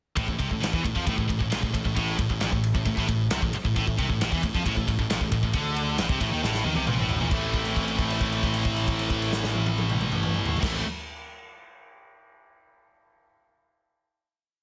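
A dense, heavily limited master with small-room ambience frames this short, dark heavy metal piece, in which a punchy, up-front acoustic drum kit drives a metal groove under two bright, scooped high-gain distorted guitars (one up front, one in the background), a double-tracked crunchy overdriven guitar and a round, fuzzy bass that doubles the single-note riff in driving eighth notes, until a drum fill at 6.4 seconds leads into a final chord held from 7.3 to 10.6 seconds.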